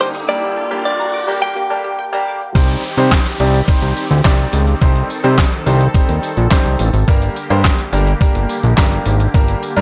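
A driving, bittersweet dance-pop passage at 106 BPM opens on a drum fill and a rising riser, with a clean, picked electric guitar melody up front, bright concert grand piano, a soft, evolving filtered supersaw swell in the background, lush detuned pluck arpeggios with tape echo, and a very quiet jingly tambourine, all building over G minor. At 2.6 seconds the drop lands on C minor as a fat, saturated analog bass enters up front, pumping along with the sidechained piano and swell, while the thumpy, sampler-style 8-bit drum machine drives crash, handclaps, hi-hat, shaker and snare. The riser gives way to a downlifter that ends at 7.1 seconds, as the harmony returns to G minor, all within a dry, gritty, high-passed digital ambience.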